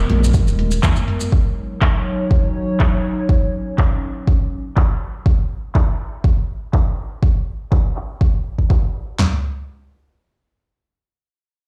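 Heard through a big sound system in a bare room and washed in large studio reverb, this earthy afro house excerpt in Eb minor moves at 122 BPM in a straight 4/4. Up front, a layered deep house drum kit drives the groove with a deep kick, punchy snare, handclaps and toms, its overdriven tone re-recorded in a small room. A second, afro-pop kit adds handclaps, toms and metallic hats under low-pass filtering, while congas struck with hard hands sit in the background and grainy, mellow maracas add texture early on. A rumbling, detuned sawtooth bass beats only briefly, ending by 0.9 seconds, as a moody analog pad with a slow attack, sub octave, chorus and phaser sustains Abmadd9 and Ebm7 chords and pumps with the sidechain until 5.2 seconds. A filter sweep runs over the drums through most of the passage, and from 5.3 seconds the harmony drops away, leaving the percussion to carry the track.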